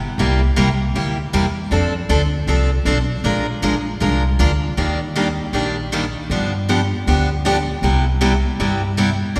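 A bright, up-front picked steel-string acoustic guitar carries this lively, swinging excerpt of acoustic string swing in the jazz manouche tradition, its fresh strings giving off audible finger squeak as it comps through a chord progression moving from C7 through F6, Bb7, Ebmaj7 and G7 before settling on Cmaj7. Underneath, a pizzicato upright bass supplies a woody, thumpy low end, starting at 0.0 seconds just ahead of the guitar's entry at 0.2 seconds. The swung eighth notes give the short passage an easy, buoyant lilt. The pair sits in a church or concert hall, and a lush, lingering hall reverb lets each chord ring out into the space. Cut from a longer piece, the fragment plays as a single section that runs to 9.4 seconds.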